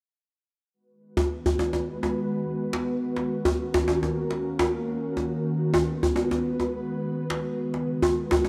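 Organic downtempo at 105 BPM with a light sixteenth-note swing, this earthy excerpt in G# dorian moves through G#m7, D#m7 and A#m7 chords. A medium-tuned djembe with metal rattles, vintage and band-limited, sits up front from 1.2 s. At 1.3 s it is joined by a dark, ethereal pad of detuned sawtooth and triangle tones, with a slow attack, long release, ensemble chorus and a moving notch, all set in a wet concert hall reverb blended with small room ambience.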